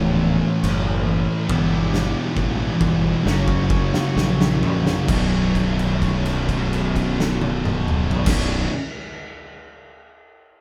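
This is a heavy, ominous stretch of stoner and doom metal cut from a longer piece, captured as a band playing live in one room with moderate studio reverb. A bright, double-tracked high-gain guitar reaches higher in register than two thick fuzz guitars that sit in the background. All of them pick a riff in straight 4/4 through the chords A, Em/G and F# before landing on Bm at 5.1 seconds, where a held note rings out until 8.3 seconds. Beneath them, a growly, punchy fingered electric bass adds overdriven fuzz. The oversized low-tuned acoustic drum kit enters at 0.6 seconds, up front and saturated, with a boomy kick, a medium-tuned snare, dark cymbals and a pumping big-room sound. The opening slows down over its first 5.1 seconds while the drums play a fill from 1.5 seconds, giving the arrival of the final chord a weighty, gritty finality.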